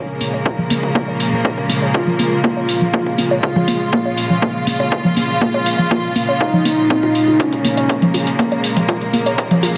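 Wet, spacious scoring-stage reverb surrounds this short excerpt of melodic techno in Bb minor at 121 BPM, a melancholic yet driving build-up cut from a longer piece. A thick, detuned sawtooth unison lead carries the melody over a rich, symphonic string section holding sustained chords, while a warbling, lo-fi pluck spins dark arpeggios through chorus and dub echo under a filter sweep. Beneath them sit a tight sequencer bass that is barely audible and a tense, string-like drone in the background, its sawtooth and noise layer softened by built-in reverb. A punchy, tape-warm analog drum machine plays up-front hi-hats and toms beside an electronic kick, and sidechain pumping runs through the lead, strings, pluck, drone, hats and toms. The harmony moves from Bbm7 to Db and back to Bbm7, a drum fill begins at 7.4 seconds, and a very quiet riser enters at 8.6 seconds.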